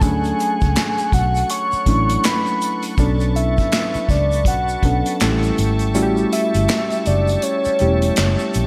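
A soft, round synth lead layered in octaves carries the melody over this sultry, late-night neo-soul R&B excerpt, its dark tone thickened by chorus, slapback echo and tape echo. Beneath it, a reedy, worn and slightly out-of-tune electric piano with slapback echo plays the chords Dmaj7, Bm9 and A7, while a smooth tonewheel organ holds sustained chords with chorus vibrato, and an up-front, foam-muted electric bass adds a dark, rounded low end. An airy, polished acoustic drum kit played with bundle sticks swings gently with handclaps, hi-hat, snare and a punchy kick that drops out at 5.9 s, while a very quiet tube shaker and finger snaps sit low in the mix, all set in a lush hall reverb with a big arena sound.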